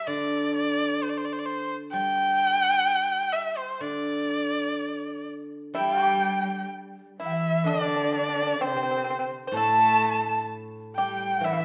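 Rubato in 2/4 at 64 BPM, this festive, graceful Chinese traditional chamber excerpt in D shang mode opens with a rich, focused solo erhu singing the melody up front with vibrato and portamento over a ringing, silvery steel-string zither played with fingerpicks; from 5.7 s a dry, percussive fingerpicked pipa adds a second line, and at 5.8 s a distant bamboo dizi with buzzing membrane, pure tone and crisp attack joins from the background alongside a bowed solo cello, all set in a moderate recital hall reverb.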